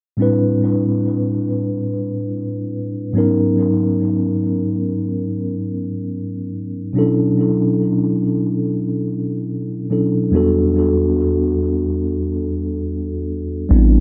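Sensual and longing, this contemporary R&B excerpt at 71 BPM drifts on a mellow, clean tine electric piano heard as if through built-in speakers, its tape echo and a moderate plate reverb blurring Am11, G#m11, Bm11 and Em11 chords until a deep, sine-like 808-style bass lands on A1 at 13.7 seconds with a fast attack and a long decay.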